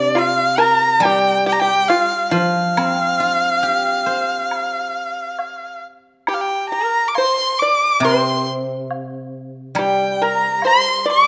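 Pastoral and graceful, this short cut from a longer Chinese traditional chamber piece centres on a single bowed erhu, rich and up front, carrying the high melody with vibrato and smooth portamento. Beneath it a dry, percussive pipa plays a second line while a silvery guzheng rings out the accompaniment, both plucked with fingerpicks. A close woodblock sits in the background from 0.2 to 10.8 seconds, all within a moderate recital-hall reverb.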